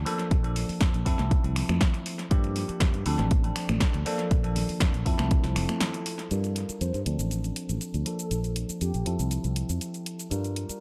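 The mix is dry on reverb but heavy on echo, cut from a longer piece of funky, groovy filtered disco house at 120 BPM in a straight 4/4, tuned to A4 = 441 Hz. A dark, round, foam-muted fingered electric bass sits up front with sidechain pumping and a low-pass filter. Beside it, a bright, bell-like tine electric piano runs through phaser, pumping, low-pass filtering and analog delay over a Bbmaj7, Fmaj7, Gm7, Dm7 progression. The beat pairs a layered, tape-warm electronic kick, placed up front, with a punchy analog drum machine of snare, hi-hat, finger snaps and cabasa, re-recorded in a large room with pumping hats and delay. Very quiet tube shaker and congas with hard hands add close, dry percussion while a filter sweep shapes the opening, until a break at 5.8 s. At 6.8 s a fat, detuned, wave-folded sawtooth synth brass line with chorus, ring modulation and a fast attack enters in the background, sustaining its brassy tones.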